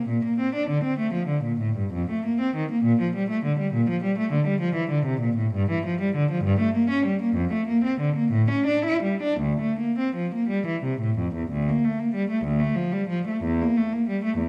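Flowing and serene, this excerpt from a baroque-style classical suite movement for solo cello moves in a rubato 6/8 at 52-68 BPM, settling into D minor from 3.7 s and turning to a new section at 11.5 s, with a single bowed cello, rich and smooth with vibrato, sitting close and up front against the dark bloom of a recital hall reverb.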